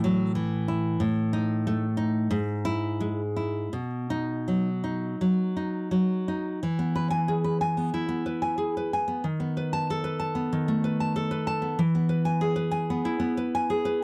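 Rubato phrasing in 4/4 carries this nostalgic romantic piece for solo nylon-string guitar, fingerpicked up front with a full-bodied, deep classical tone and audible finger squeak, moving into a new section at 6.6 seconds, all captured in a dry, close 1970s-style studio sound with light reverb and cut from a longer performance.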